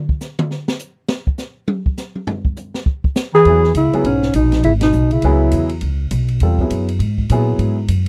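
A swinging modal jazz fragment, cool and hypnotic, opens with a drum solo from 0.0 to 3.5 seconds on an open acoustic kit with boomy kick, a high-tuned snare, toms, hi-hat and dark ride cymbals. At 3.3 seconds a smooth-topped alto saxophone takes the melody, joined by a punchy bass clarinet on a second line, and both horns play with vibrato and scooped notes in a jazz style. A baby grand piano with a present, short-sustained tone and a woody, thumpy pizzicato upright bass come in just after, settling the music onto a single minor eleventh chord. The band hits an accent at 4.8 seconds, and the piano, bass and drums carry on after the horns fall away. The dry, close sound recalls a 1970s studio, with the kit, bass and alto saxophone all sitting up front.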